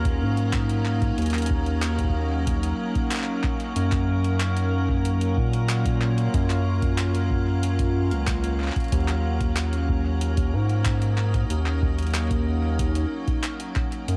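A dry home cassette recording frames this eerie, glitchy IDM fragment, cut from a longer piece, in a straight 4/4. An icy, crystalline glass pad, detuned and ring-modulated with chorus and its own reverb, holds slow-attack chords over a round, mellow analog bass that sits up front and evolves throughout. A deep, tape-warm electronic kick and a gritty, pitched-up, overdriven jungle sampler-style kit with handclaps and hi-hat enter at 0.1 seconds, as the harmony moves from Ebm7 to Gbmaj7 at 3.8 seconds and back at 8.9 seconds.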